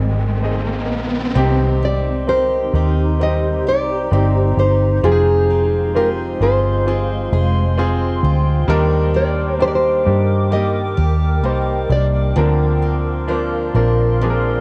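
A dark, fingerpicked nylon-string guitar carries the melody from 1.9 seconds, its cassette-tape color giving this heartfelt, emotional pop ballad at 65 BPM a homemade intimacy, while a round, punchy, foam-muted electric bass sits up front underneath. A bright concert grand piano with deep bass and short sustain plays the accompaniment and a cloudy, evolving granular pad holds mellow sustained chords in its own reverb, as an electronic riser opens the cut before a picked steel-string acoustic guitar adds arpeggios in the background from 1.4 seconds. The chords move from Ab through Cm, Fm and Ebmaj7 to Bbadd9, all in a light studio reverb on what sounds like a cassette home recording taken from a longer piece.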